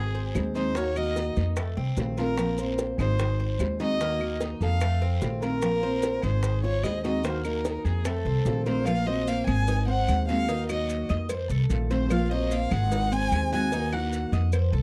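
A straight 4/4 pulse at 148 BPM drives this danceable, warm passage of Cuban son and guajira, cut from a longer piece, with the up-front upright bass thumping out woody, dark pizzicato on gut strings beneath a bowed violin that carries the melody with vibrato and expressive portamento. Around them, a metallic Cuban tres picks arpeggios on its doubled strings, a fingerpicked nylon-string guitar adds a quiet second line, and a full-bodied steel-string acoustic guitar fingerpicks accompaniment, complete with finger squeak. Tight, high-tuned bongos and cowbell, woody claves, a raspy guiro and grainy maracas sit in the background of a dry, close 1970s-style studio sound as the chords cycle through Ab, Ebm, F7 and Bbsus2.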